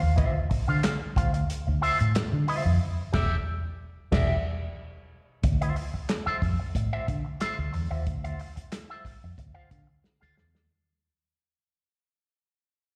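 A funky, hypnotic groove from a longer piece, caught live at a gig through the venue's PA with the light reverb of a recital hall. A vintage fingered electric bass sits up front with a foam-muted, round, punchy tone, dark and amped, anchoring the low end. A soul drum kit feels dry and muffled, with dark cymbals, a medium-tuned snare, a tight kick, handclaps, hi-hat and crash, and a lo-fi, rolled-off top brushed with slapback echo. Higher up, a clean, picked electric guitar through an envelope filter and wah adds bright, twangy accompaniment, dressed in plate reverb and slapback echo. The harmony shifts from Dm9 to Em7 for a band accent at 2.8 seconds, returns to Dm9 as the music begins fading out at 5.4 seconds, and a drum fill arrives at 10.0 seconds.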